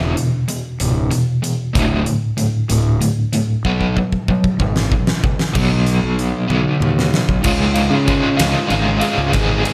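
In a straight 6/8 that sits in half time until 5.6 seconds, this cathartic, bittersweet quiet-loud alternative rock fragment sets a crunchy, bright, double-tracked overdriven guitar riff with tremolo up front over a growly fuzz-soaked fingered electric bass and a huge acoustic arena drum kit with a fat snare and punchy kick, whose fills around 3.7 and 6.5 seconds push the power-chord moves into the later sections under light studio reverb.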